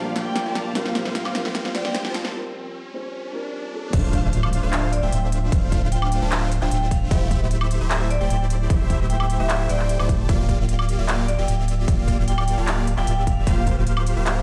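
A half-time future bass groove, dreamy and emotional, opens with a big-room dance drum kit of punchy snare, crisp hats, handclaps, woodblock and crash beneath huge, lush, detuned supersaw chords, a soft, felt-muted upright piano with audible action noise, a faint ethereal pad and a metallic, ringing hard-mallet vibraphone melody in the background. A very quiet riser builds from 0.5 seconds, and a swell joins it late in the break that begins at 2.3 seconds. At 3.9 seconds the drop lands with an impact, a layered electronic kick and a deep, thick saturated sub bass sitting up front, and the vibraphone returns at 4.9 seconds after the piano and pad have fallen away. Sidechain pumping moves the piano, pad, supersaws, vibraphone and bass, delay trails the piano and vibraphone, overdrive roughens both drum parts, and the mix sits in a bare stone room with light reverb.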